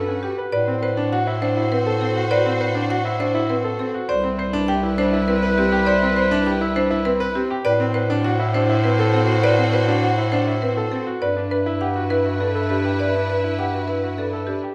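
Urgent and hypnotic, this minimalist classical pattern piece moves at 101 BPM in 3/4 in A dorian, cut from a longer work. A woody marimba carries the melody over clear, polished piano arpeggios and a mellow bass clarinet holding the low line, while a rich studio string section sustains smooth, vibrato-tinged chords. A distant clarinet adds a soft second line in the background, all set in a moderate scoring-stage reverb as the harmony moves from Gmaj9 through Am69 and Cmaj7 to G6.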